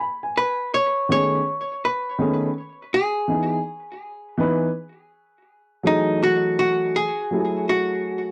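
A home cassette recording with moderate studio reverb carries this relaxed hip hop excerpt at 82 BPM in E major, where a dark, woody upright piano sits up front in accompaniment from the start over swung sixteenths, and a clean, compressed hollow-body archtop guitar, miked and amplified with cassette tape and tape echo, enters at 0.4 s to pick a warm melody through B13, Emaj7 and F#m9 chords.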